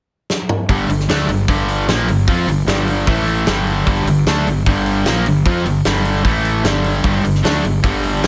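Light studio reverb gives this short hard rock clip a natural, big-room sound, and it is cut from a longer piece. A drum fill opens at 0.3 seconds on an up-front acoustic kit with a fat snare, punchy kick, toms and hi-hat. At 0.7 seconds two cranked stack guitars come in with an overdriven, picked riff, one set further back than the other. A fuzz-laden fingered electric bass enters at the same moment, growly and amped. The mood is aggressive and heavy at 151 BPM in straight 4/4 and G minor, with the riff moving from Gm to A5 and back twice before landing on G5, and all parts play on until 8.3 seconds.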